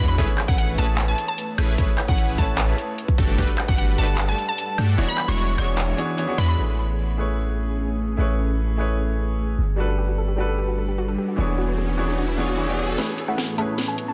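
This playful, euphoric future bass excerpt opens straight into its drop, with a glassy, crystalline wavetable pluck carrying the melody over punchy, detuned supersaw stabs and a deep, boomy 808-style bass, each of them pumping with sidechain compression. An ethereal pad sits in the background with ensemble chorus and built-in reverb, while a smooth, vintage-toned grand piano adds accompaniment. A layered electronic kick and a trap kit with sharp snare, metallic hats, handclaps, woodblock and crash cymbal drive the half-time groove. The kick drops out at 5.0 seconds, and the melody, stabs and trap kit fall away at 6.6 seconds, leaving pad, piano and bass to carry the lush extended chords. A soft, round pluck enters with arpeggios at 9.8 seconds and a riser joins shortly after. The pluck melody, stabs and trap kit then return for a short build-up, with a drum fill and a filter sweep on the supersaw, under a dense, heavily limited modern master.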